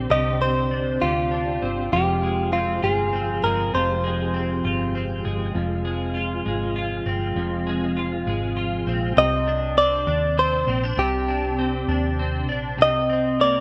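A bright, twangy, double-tracked twelve-string electric guitar, a smooth tonewheel organ with chorus vibrato and fast rotary speaker, and a dark, round, punchy hollow-body short-scale electric bass open this aching, melancholic six-eight pop ballad at 66 BPM, while an up-front, clean, picked electric guitar recorded direct carries the melody until 4.9 seconds and returns at 9.2 seconds, just after the organ drops out at 9.1 seconds, moving through Csus2, Fm and Cmadd9 harmonies in a rough home demo mix with light reverb.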